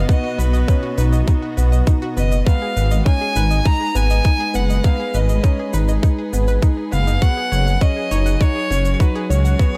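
A tight, tape-warm electronic kick up front and a dark, smooth shaker at a straight 101 BPM drive this hopeful, luminous piano and strings electronica excerpt on F#sus2, where a deep, rumbling detuned saw bass pumps under dark, sul tasto chamber strings, a bright, wave-folded analog pluck arpeggiates with chorus and delay, a felt-muted upright piano with audible action noise repeats an intimate riff, and a rich, focused solo violin with vibrato carries the delayed melody through a small room.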